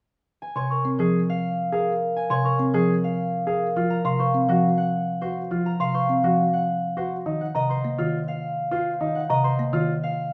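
Hypnotic and meditative, this short minimalist classical passage in 3/4 is cut from a longer piece and moves through Bbm7, Gbmaj7 and Ebmadd9 chords. A ringing, thumb-plucked concert harp carries the melody up front from 0.4 seconds, over a woody, rustic folk marimba with soft mallets in the low register. Delicate, bell-like celesta arpeggios sit high above, while a clear, polished baby grand piano adds its own arpeggios from 1.0 seconds, all within a moderate large studio reverb.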